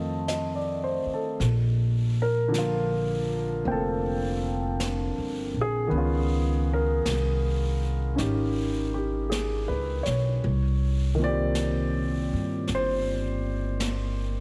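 Intimate and romantic, this short excerpt from a longer jazz ballad moves at a slow 53 BPM in 4/4, with a swing feel on the eighth notes. A grand piano with a natural, up-front tone carries the accompaniment from the opening moment, spanning Bb2 to A5, while a pizzicato upright bass with steel strings adds a woody, dark low end between F1 and G2. A jazz drum kit played with brushes joins at 0.3 seconds, its brushed snare, medium-tuned snare drum and hi-hat sitting well beneath the piano and bass in a natural studio room. The harmony opens on F7, then settles into Bb6 at 1.4 seconds, shifts to Db9 and finally to Cm7 at 10.4 seconds. A light reverb and a heavily compressed, radio-like sound give the recording a close, boxed-in character.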